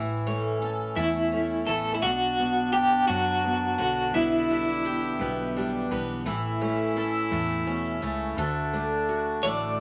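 A fingerpicked steel-string acoustic guitar with a roomy auditorium body, a shimmering, octave-doubled twelve-string playing arpeggios, and a dark, round fretless electric bass open this hopeful acoustic folk piece, a short cut from a longer work. It moves at a relaxed 57 BPM in 6/8 with a straight feel, passing through A, Bm, Em7/B, A and D. At 1.0 seconds an electric guitar through a small old amp takes the melody, twangy and slightly broken-up with tremolo, sitting up front until 5.9 seconds and returning briefly near the close. A clarinet enters at 2.0 seconds with a soft-attack classical second line held in a narrow middle range. Finger squeaks on both acoustics and the fresh-string sparkle of the boxy twelve-string add intimacy, while a moderate studio reverb gives the small band a warm, close space.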